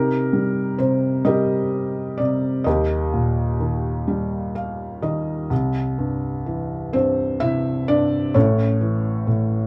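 A felt-muted upright piano plays alone from the start, soft, intimate and mellow, with its vintage character and audible action noise placed up front, setting a calm, lyrical classical mood in 6/8 with free rubato. A brief piano fill from 4.1 to 5.5 seconds carries the opening Cm7 and Eb harmonies into a second passage that moves through Cadd9 to A. Light reverb and a dark, warm production frame this short cut from a longer piece.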